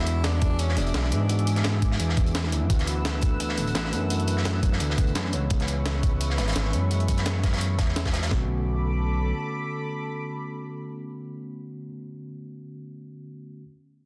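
This rolling, melancholic liquid drum and bass passage in B dorian at 171 BPM opens with a bright, close-miked tenor saxophone phrase with vibrato and dub echo, which lasts only until 1.5 seconds, over a mellow tine electric piano and a lush, warbling unison pad thick with chorus. The electric piano runs through a low-pass filter and delay, with a filter sweep shaping it through the first 8.3 seconds. Meanwhile, the detuned, vintage-sounding pad holds sustained chords high above, moving from E7 through D69 and C#m7 before settling on Bm7 at 8.3 seconds. A smooth sawtooth synth bass with a touch of ring modulation sits up front underneath, joined by layered breakbeat drums. Two pitched-up, sampler-style kits supply a thumpy kick, gritty snare and hi-hat, while a crunchy acoustic kit adds saturated, rolled-off hats and snare thinned by high-pass filters. The drums drop out around 8.4 seconds, leaving the bass, keys and pad to carry a short closing stretch under light reverb and a dense, heavily limited master.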